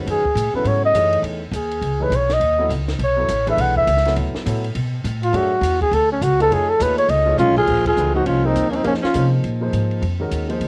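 A veiled, bucket-muted trumpet with vibrato leads this searching, cool modal jazz cut at 205 BPM with a swung feel, soloing over a woody pizzicato upright bass, an intimate baby grand piano with audible action noise, and a dry compact cocktail drum kit with dark cymbals and a punchy kick, while a raspy, growling alto saxophone enters at 7.4 seconds alongside a drum fill, with a band accent at 7.8 seconds marking the move to Bb minor, all captured in a lightly reverberant home cassette recording.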